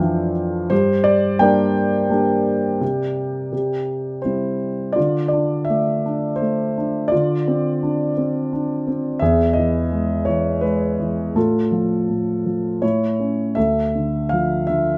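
A dark, mellow concert grand piano plays alone and up front, its deep bass and long sustain carried in light reverb through this 15-second fragment of a longer classical piece. The lyrical solo moves at 84 BPM in 3/4 with a rubato feel, tuned to A4 = 445 Hz, and its mood is cool and bittersweet. After opening on chords such as Gm and C, the music settles into D minor at 5.0 s, passing through Dm7, E, F/A and A before returning to Dmadd9 at 13.6 s.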